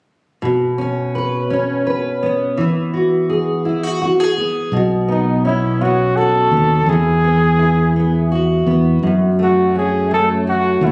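Pop in a slow, lilting 6/8 at 56 BPM, heartfelt and romantic, this excerpt opens on a double-tracked fingerpicked steel-string acoustic guitar with a full-bodied dreadnought tone, moving between Bsus2 and Eadd9. A round, amped fingered electric bass arrives at 4.7 seconds, and at 5.1 seconds a clear flugelhorn takes the solo melody with pop-style vibrato, before the chords reach F#m at 9 seconds. The parts sit up front in a recital-hall reverb with a small-room ambience, captured on a phone and compressed, and it is cut from a longer piece.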